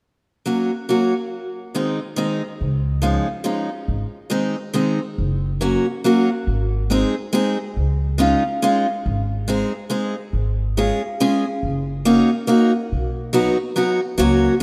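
Charming and nostalgic, this short cut from a longer musette waltz sways in three with a light swing, built on a bright, boxy picked steel-string acoustic guitar accompaniment with fresh strings that opens alone before a woody, growly pizzicato upright bass joins at 2.6 seconds. Both instruments sit up front in a rough home demo mix bathed in a moderate plate reverb, and the harmony moves through chords like C#add9, F#6 and B as the second section unfolds from 5.2 seconds.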